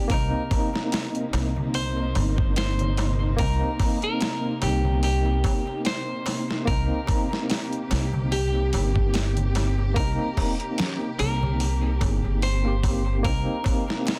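A slow 73 BPM trip hop groove in 4/4 with swung sixteenths rests on an up-front, overdriven, gritty sampler-style drum kit with a thumpy kick and medium-tuned snare, alongside a woody pizzicato upright bass and a crisp metal-shelled darbuka tucked into the background. Over a single Cm7 chord in C minor, a bright tine electric piano shimmers with tremolo while a dark bowed string section adds sustained chords with expressive vibrato, portamento and vintage 12-bit sampler grit. A clean, picked electric guitar carries the melody through tape echo, and the whole dark, hypnotic 14-second fragment, cut from a longer piece, sits in a small room with a dense, heavily limited master.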